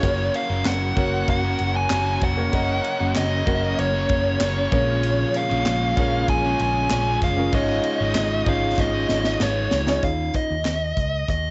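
From the first beat, a dark, smooth overdriven lead guitar carries the melody up front over an intimate concert grand piano with audible action noise, a crunchy guitar riff, punchy picked electric bass, a polished drum kit with high-tuned snare, kick, handclaps, hi-hat and ride, and a very quiet, lush bowed string section in this hopeful, anthemic piano-driven pop excerpt in F# major at 96 BPM, with cassette-tape haze on the guitars, piano and drums, plate reverb on the lead and piano, and a drum fill at 8.8 seconds leading into a new section at 10.0 seconds.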